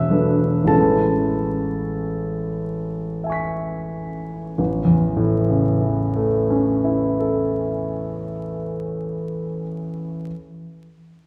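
A solo concert grand piano with a deep bass and natural tone opens this hazy, luminous impressionist excerpt in A major, drifting in a rubato 3/4 at 43-53 BPM: it slows over the first 4.6 seconds as an E9sus4 gives way to a lingering Amaj9, then settles onto a plain A chord, heard from further back in a concert hall with a long, wet reverb and a veil of vinyl crackle.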